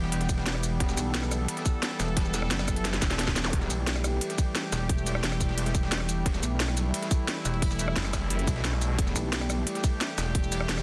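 A straight drum and bass groove of tight electronic kick and a cracking-snare kit with crisp hats, rim clicks and shaker, backed by a gritty, pitched-up breakbeat kit in the background, carries this aggressive, futuristic, dark technical fragment, where a heavy, pulsing sine wobble bass sits under a bright, evolving sawtooth pad with chorus and sidechain pumping, a growling, detuned saw bass snarls in briefly before returning for a longer stretch from 6.3 to 9.1 seconds, and a small electronic zap flickers at 3.4 seconds as a drum fill closes, all in light digital ambience with a dense, heavily limited master.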